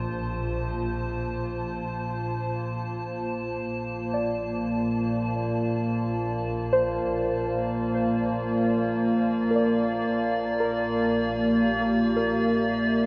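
A warbly, tape-like pad leads this weightless, serene ambient excerpt in free time and Bb major, tuned slightly low, its nostalgic, detuned chords sitting up front with chorus and their own reverb as they fade in across the full 13.1 seconds. Beneath it, a clear, distant double bass section holds a bowed Bb1 with vibrato, fading out over the same span. At 3.9 seconds an evolving analog drone enters, its sawtooth and pulse-width-modulated pulse tone carrying chorus. Muted, felt-like synth keys join at 4.1 seconds with soft, decaying arpeggios, intimate and dark, coloured by chorus and tape echo. The harmony rests on Bbmaj7 before shifting to a rootless C7 over Bb at 10.1 seconds, all bathed in a huge, wet ambient reverb.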